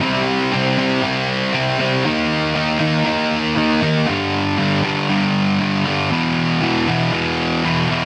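The recording has a dense, heavily limited modern sound, set in a large studio with a moderate reverb. This is a short rock fragment in a straight 4/4, carrying a restless, cathartic mood across about 8.1 seconds cut from a longer piece. A single fuzz guitar plays alone throughout, bright and picked, double-tracked and placed up front. Its sound is distorted, and a tape echo trails behind each phrase. The part moves through C5, Eb5, G5 and E5 power chords, ranging from E2 up to Eb4.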